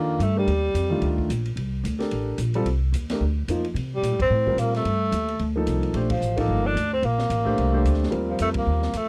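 Tenor saxophone, grand piano and upright bass sound together from the first instant, with an open acoustic drum kit joining a breath later in this brief modal jazz fragment cut from a longer piece. The mood is spiritual and searching, carried by a brisk swung 4/4 over a single minor eleventh harmony. The saxophone's breathy, whispered tone has a soft attack and vibrato, sounding intimate yet slightly distant and roomy; it drops away at 1.2 seconds and returns at 4.0 seconds to carry the melody onward. Beneath it, the piano comps with a warm, natural voice, deep low end, long sustain and audible action noise, while the plucked bass sits up front with a woody, growly steel-string character. The drums stay low in the mix, a small-room kit of dark cymbals, ride, hi-hat, a high-tuned snare and a boomy kick, and the whole band hits a few accents together. The dry, close sound recalls a 1970s studio session.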